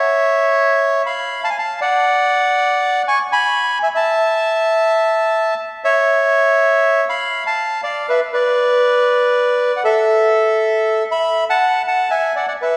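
Bathed in a lush concert-hall reverb, this short tango passage in A major features a solo bandoneon, reedy and slightly boxy and placed up front, playing a playful yet passionate rubato line at around 120 BPM, its chords shifting through Dm, E and suspended colors before settling on an open E5 at 12.1 seconds.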